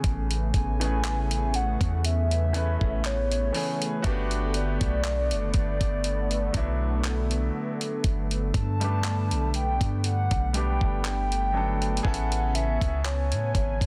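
A gritty, thumpy sampler-style drum kit of kick, hi-hat and handclaps opens this dreamy, smooth contemporary R&B excerpt at 60 BPM with a lightly swung 16th feel, alongside a deep, round 808-style bass up front, a clear, polished baby grand piano and a detuned sawtooth analog pad with chorus moving from Amaj9 to Gmaj9 and back, before a hollow, woody clarinet-like synth lead with vibrato, phaser and delay carries the melody from 0.6 seconds, all within a dry, dense and heavily limited modern mix.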